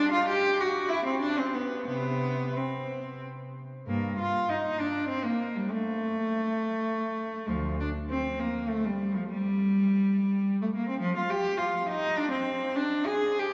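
This classical recording is a baroque-style suite movement for unaccompanied cello, introspective and solemn in mood, moving in 3/4 at roughly 89 to 105 BPM with a flexible, rubato feel. A single bowed cello plays throughout the 13.5 seconds, ranging from D2 up to Ab4, and the music settles into G minor from 3.9 seconds. The cello's tone is rich and smooth, with vibrato and an even delivery that gives each phrase a composed, contemplative weight. The player sits up front yet carries a distant quality, framed by a wet cathedral reverb with a long 4.4-second decay that places the listener further back in the room. Tuned to A4 = 441 Hz, this brief passage is cut from a longer piece.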